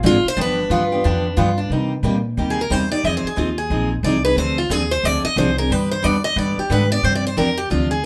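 Virtuosic and bittersweet, this cut from a longer piece is acoustic string swing in the jazz manouche style, with a swung feel and a moderate club reverb around the group. A full-bodied jumbo steel-string guitar carries the melody up front from 0.1 seconds, then takes a solo from 1.7 seconds to the close, its picked lines bright and clear. Beneath it, a boxy parlour guitar supplies bright picked accompaniment with finger squeak audible, while a second parlour guitar with fresh strings and its own finger squeak sits forward in the mix, playing a brief second line that stops at 1.7 seconds. An upright bass played pizzicato on gut strings gives a woody, thumpy, dark foundation. The harmony moves from G7 into a minor-key progression through Cm7, Fm7 and Dm7b5 before resting on G and G7sus4, which deepens the bittersweet cast of the solo.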